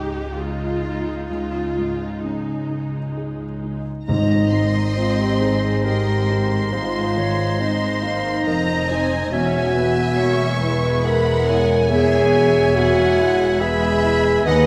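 A close-miked French horn section holds soft-attack chords from 4.1 s in this hopeful, uplifting cinematic orchestral cue, cut from a longer piece in a rubato 3/4 at 63-70 BPM, where it joins a lush violin melody, a second violin line, a clear oboe, a pure straight-toned flute, a present clarinet and a brief, round timpani entry ending at 5.4 s, all over an intimate grand piano with audible action noise, smooth violas, woody dark cellos and double basses that sound from the start in a moderate scoring-stage reverb.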